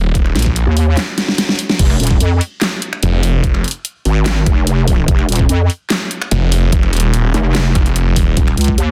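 This is heavy wobble dubstep, cut from a longer piece, moving at 146 BPM in 4/4 with a half-time feel and an aggressive, menacing mood. A snarling, growling sawtooth bass with distortion and overdrive opens the passage on an Eb5 chord. It is bright, detuned in unison and carved by a moving notch, and it drops out at 3.6 seconds before returning at 6.3 seconds. From 0.7 seconds a wobbling square- and sine-based bass with chorus and overdrive sits up front, resonant and saturated, reaching from Eb1 to F2. Alongside them, an overdriven, knocking electronic kick pairs with a layered dubstep kit of crash cymbal, finger snaps, handclaps, hi-hat and a huge snare that was re-recorded in a small room, and a short drum fill arrives early on. The mix is dry, dense and heavily limited, with a modern master.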